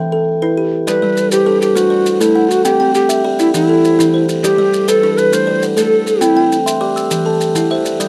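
A ringing, hollow-box kalimba opens this rippling, hypnotic southern African traditional excerpt at 0.0 seconds, thumb-plucking interlocking arpeggios in a straight 12/8 at 135 BPM over a repeating Em, G, Am, C cycle. At 0.9 seconds a breathy, up-front low wooden flute with a chiffy attack and unsteady vibrato takes the melody, joined by softly grainy, mellow maracas and, from 1.0 seconds, a second, dry, solid-board kalimba whose buzzing tone sits slightly lower in the blend. The first kalimba adds a fill from 6.5 seconds, and the close, detailed miking with little reverb keeps every woody pluck and breath intimate.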